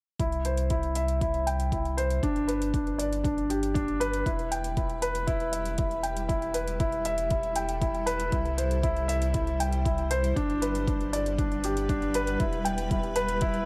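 Set in a light digital ambience, this moving, hypnotic piano and strings electronica piece, cut from a longer work, pairs an up-front, short-sustained concert grand piano riff carried on a delay with a round, sine-like sub bass that pumps to the sidechain, while an overdriven deep kick and metallic hi-hat drive the groove and a bright, blurred granular cloud pad fades in behind them from 1.9 seconds with detuned, evolving sustained chords that cycle through C, Gmaj7 and Em.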